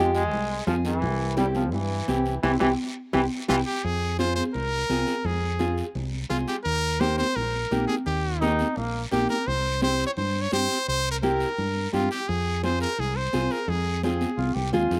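A straight 4/4 cumbia pulse drives this fiery Latin passage at 171 BPM, with raspy, compressed guiro carrying a slapback echo and bright, high-tuned congas sitting thin-skinned and vintage in the background. A fingered electric bass stays direct and up front, while a nylon-string guitar fingerpicks full-bodied, deep classical accompaniment throughout. The piece opens on a forceful, jazz-style trombone solo, bright with vibrato and a distant, roomy punch, before the band hits an accent near its close. At 3.5 seconds a brilliant, close-miked trumpet takes the melody in a punchy pop style with its own slapback echo, as the music settles into F minor at 3.8 seconds. The trombone returns only in short bursts as a second line beneath it, over a dry, open-air sound in this fragment cut from a longer piece.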